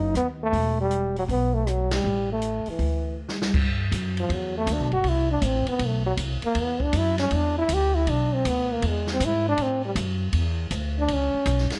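A warm, up-front trombone leads this smoky, swinging small-group jazz excerpt at 159 BPM, singing with vibrato and scooped notes before a drum fill at 3.2 s ushers it from E minor into a G major solo at 3.5 s. A woody, growly pizzicato upright bass with steel strings sits close alongside, while an acoustic kit in a small room adds dark cymbals, a medium-tuned snare, rim clicks and a boomy kick, with a band accent at 1.8 s. Light reverb and worn, warbling cassette tape with pitch drift lend the recording its aged character.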